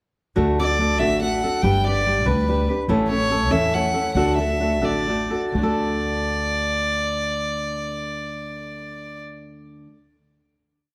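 A floating, pure-toned violin sings song-like motif phrases with a soft, sul tasto attack, entering at 0.6 s over a festive yet romantic mariachi folk setting in D major and 6/8, moving freely in rubato around 80-97 BPM. A full-bodied nylon-string guitar mixes fingerpicking and folk strumming on open chord shapes, with audible finger squeak, while a woody, thumpy pizzicato upright bass marks root and fifth on the main beats through the D, G, A, D progression. The brief piece slows from 2.9 s and comes to rest on a final chord held until 8.4 s, all bathed in the moderate reverb of a church.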